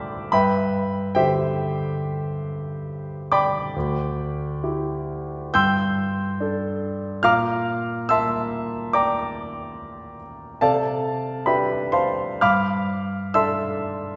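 Uneven, rubato beats drift around 70 BPM in 4/4 through this mysterious, hazy impressionist classical solo piano passage cut from a longer piece, where a clear, natural concert grand with deep bass sits up front across the full 14.2 seconds, spanning D2 to G6 as it moves from G through Dsus24, Gsus2, Bbmaj9 and Cadd9 to G9, bathed in a wet concert hall reverb with a 2.1-second decay that places the listener further back in the room and trims the highs above 7.8 kHz.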